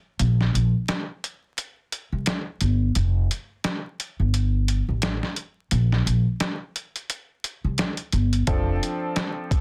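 This soulful, nostalgic boom-bap hip-hop excerpt opens at 0.2 s with a pizzicato upright bass and a sampler-style drum kit, moving at 87 BPM in 4/4 with a 59% swing on the 16ths. The woody, steel-strung bass sits up front in the low register, while the pitched-down, compressed drums give a muffled character, pairing a thumpy kick with a medium-tuned snare and hi-hat. The harmony rests on G minor and F through this break, with the bass dropping out at 8.8 s. At 8.5 s a slightly detuned upright piano appears over an F6 chord, its smooth, vintage tone filtered at both ends, with a long sustain and a touch of plate reverb. The overall sound is close and dry, dense and heavily limited, with a layer of vinyl crackle, and the drums carry on until the cut at 9.6 s.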